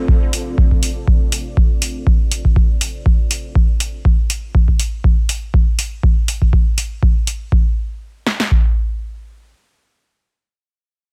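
Acid house at 121 BPM in D minor with a gritty, driving feel, opening on a lush vintage string machine holding a sustained Dm7 chord with a slow attack, ensemble chorus and sidechain pumping until 3.5 seconds, while an up-front analog drum machine with a deep kick and punchy snare plays to 8.6 seconds alongside dry metallic hi-hats, all pressed into a heavily compressed, radio-like sound in this short cut from a longer track.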